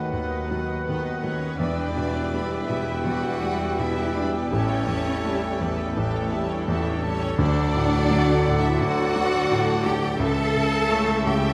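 A warm concert grand piano sits up front with a deep, open bass register and short sustain, carrying the melody in this lyrical, passionate classical excerpt in D major, played rubato at around 83 BPM in 4/4. High above it, a soft-attacked violin section shares the melody in the background, while a second, richer violin section, a pure straight-toned flute, a mellow cor anglais and a dark, close-miked clarinet weave second lines around it. A clear, very quiet viola section adds accompaniment, and brass fills out the middle: a dark, distant French horn section and a bright, tight trombone section hold sustained chords as a roomy trumpet section adds stabs. The low end rests on a mellow tuba, a focused double bass section and a distant, expressive cello section, the two string sections bowed and rich with vibrato. The harmony moves from B7/D# through Em7 and A7 to D, and a dry, close timpani on D3 enters quietly from 7.4 to 8.4 s before the passage turns to A/C#. 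A wet recital hall reverb gives the ensemble a lush, spacious sheen.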